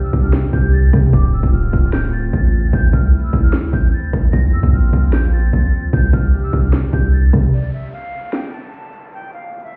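A half-time trap groove at 150 BPM in 4/4 drives this menacing, hard-hitting hip hop fragment. An electronic drum kit sits up front with a hard-clipped kick, sharp snare, metallic hi-hats, rim clicks and crash cymbal. Beneath it, a deep, sine-toned 808-style bass with a fast attack and long decay anchors the low end from 0.1 s, while a hollow, chorused pad sustains mellow chords through Csus2, Dm7, Am and Bbsus2. Above them, a breathy, bright jazz flute carries the melody with vibrato, a crisp chiff and a reedy edge, trailed by tape echo. At 7.5 s the pad and bass drop away for a break, leaving drums and flute as a faint electronic downlifter enters. The whole mix sounds muffled, as if heard through a wall, with a stone-room tint and vinyl crackle.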